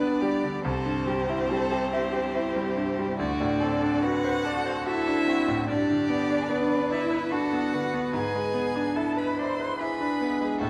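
A bright, brilliant concert grand piano sits up front in this tender, slow romantic movement for piano quartet, its accompaniment reaching from a deep bass up into the middle register throughout the short excerpt. Above it, a rich, expressive violin carries the melody in a high range with vibrato and portamento, heard at a slight distance. A second violin, clear, smooth and close, plays an even second line beneath it, while a cello adds another line in the background with a soft attack, vibrato and its own sliding portamento. In G major at 72 BPM in a flexible, rubato 3/4, the harmony moves from G through C and D7 back to G before turning toward E7/G#. A moderate concert hall reverb and a dark, warm production give the quartet a soft, enveloping glow.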